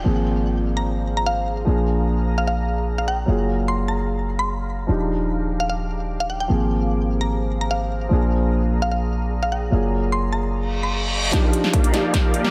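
This euphoric, playful future bass excerpt in Eb major opens at 149 BPM in a half-time feel with a downlifter sounding over a dark, mellow concert grand piano, a woody, round mallet-like synth pluck carrying the melody through chorus, phaser and delay, a shimmering, ethereal ambient pad under a filter sweep, and a deep, boomy 808-style bass, these four pumping against the sidechain over chords such as Ab69, Bb7 and Gbmaj9. A reverse cymbal at 10.7 seconds leads into a build-up at 11.3 seconds, where huge, lush supersaw chords through a low-pass filter take over the riff as a big-room drum kit with a punchy snare and metallic hats plays a fill beside a punchy, up-front electronic kick. The mix sits in light reverb and digital ambience.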